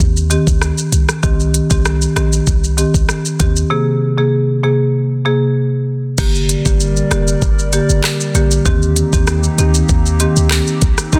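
This dancehall excerpt moves at 97 BPM in a straight 4/4 with a tough, bouncy mood, and it sounds like a slice cut from a longer piece. A produced, electronic island pop drum kit sits up front with a knocking kick, smooth hi-hats, handclaps, rim clicks, shaker and crash cymbal. Beneath it a clean 808-style bass supplies deep, boomy sine tones with a fast attack and a decaying, mellow tail. From 0.3 seconds a woody marimba played with medium mallets on rosewood bars carries the accompaniment up front, its sidechain pumping giving the chords a breathing bounce as they move through Eb6, Cm and Abadd9 and then on to Gm. At 6.2 seconds a hollow, soft pad enters low in the mix with slow-attack sustained chords, chorus and its own sidechain pumping, and at 11.1 seconds a breathy, flute-like synth lead with vibrato and chorus touches a single note just as the excerpt ends. The mix is dry and dense, with a heavily limited modern master.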